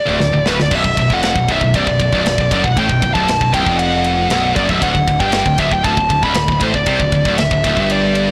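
A high-gain lead guitar sits up front with a warm, distorted melody and tape echo, riding over two bright, picked rhythm guitars churning out a heavy riff, a growly fuzz bass and a tight metal drum kit that opens with a fill at 0.2 seconds, all in a blown-out, overdriven, nearly reverb-free recording of aggressive heavy metal cut from a longer piece.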